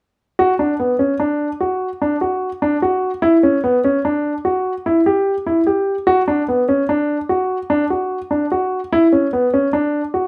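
This progressive instrumental piece has a bright, driving mood and moves in a straight 7/4 feel, with the piano tuned slightly above standard pitch. A concert grand piano plays alone from 0.4 to 10.3 seconds, staying between B3 and G4. The piano sits up front and sounds intimate and natural, with deep bass, long sustain and audible action noise from the instrument itself. A light reverb gives the room a gentle sense of space around it. The recording is a short portion cut from a longer work.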